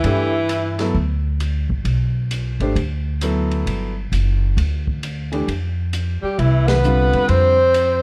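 Hypnotic and spiritual, this brief modal jazz excerpt swings gently in 4/4 as a breathy, whispered alto saxophone with soft subtone and scooped notes carries the melody over a bright tenor saxophone second line, both sounding at the start and returning at 6.2 seconds for a band accent at 6.6 seconds, while a warm baby grand piano accompanies, a woody, thumpy pizzicato upright bass sits up front through the full 8.0 seconds, and a dark-cymbaled, boomy-kicked drum kit sits low in a lightly reverberant, mellow mix moving from Gmaj9 to Fmaj7sus2.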